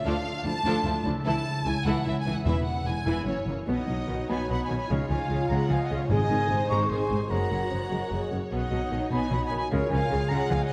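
Lush, bowed violins carry the melody with smooth vibrato while a second violin line, expressive violas, soft-attacked cellos and rich double basses fill out a triumphant, heroic adventure-film cue in a straight three-beat metre, with a ringing, fingerpicked harp arpeggiating in the background. Hard-mallet timpani with calf heads strike briefly at 2.5 s and 6.1 s, and from 3.7 s an airy, distant silver flute adds a second line above dark, roomy French horns holding sustained chords. The orchestra sits in a wet scoring-stage reverb with a dark, warm production, and the passage is cut from a longer piece.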